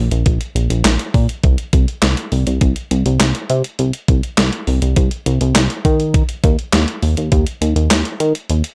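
Cool and driving, this short synth-pop clip in C minor at 102 BPM pairs a glossy, retro chorused synth bass, built from pulse and sawtooth tones with a plucky filter, against a clean 12-bit drum machine of thumpy kick, medium-tuned snare, handclaps and hi-hat, both up front in a dry, gritty recording.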